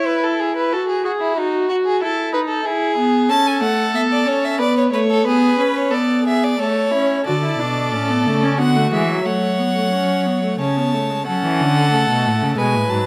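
A clear, focused violin carries the melody from 3.3 s over a rich violin second line and a distant-sounding viola accompaniment in this joyful, lively baroque-style string quartet fugue at 91 BPM in 3/4, with a portamento-laden, expressive cello joining on bass at 7.3 s as the music turns from A major to F# minor, all bowed with vibrato in a moderate recital hall ambience.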